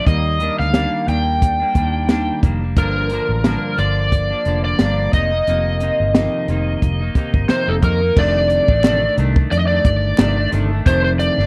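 Nostalgic and laid-back, this short cut from a longer indie and bedroom pop piece moves at 89 BPM in 4/4 with a light swing, cycling through Ebmaj7, Gm7 and F7sus4 before landing on F13 at 8.2 seconds. An overdriven slide guitar carries the melody up front, its bright tone coated in lush chorus and slapback echo, while a twangy, picked clean electric guitar with its own chorus and warbly pitch drift supplies the accompaniment over a round, foam-muted vintage fingered bass. A compact cocktail drum kit with a punchy kick and high-tuned snare sits up front, smooth and dark, in a dry 1970s-style studio sound, and a hollow group handclap joins in the background from 8.8 to 10.4 seconds.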